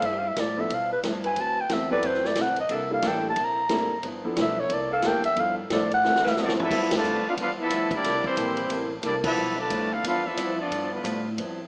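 A rough home-demo mix with a small-speaker sound and lush hall reverb frames this energetic big band swing excerpt at 180 BPM, where a raspy, growling clarinet solos up front over boxy picked acoustic guitar, a smooth saxophone section, woody pizzicato upright bass, a roomy swinging drum kit and a concert grand piano with audible action noise. At 6.4 s a clear, vintage trumpet section takes the melody over a bright trombone section's second line, as a drum fill leads into a shift to G major at 6.7 s, with band accents punctuating the swing.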